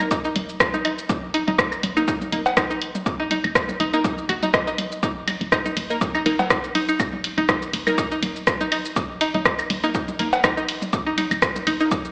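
Minimal techno at 122 BPM in 4/4, with a light 16th-note swing and a cool, sparse mood, heard here as a roughly 12-second cut from a longer piece. A punchy electronic kick sits under an up-front analog drum machine playing cabasa, hi-hat, ride cymbal and rim click, while overdriven electronic toms, claves, woodblock and cowbell add gritty colour through a digital delay. A woody, round FM bass with a dark, decaying tone pumps against the sidechain in its low register. A bright, twangy, string-like resonator pluck, also up front, enters at 0.1 seconds with a sawtooth edge, a noise layer and a filter sweep, treated with chorus, phaser, sidechain pumping and dub echo. A crisp, detuned wavetable chord stab with a mellow filter pluck drifts through digital delay behind it. The drums carry a small-room character, and the whole mix sits in a moderate plate reverb and large studio ambience, as if played on a big sound system in a bare room and heard over AM radio.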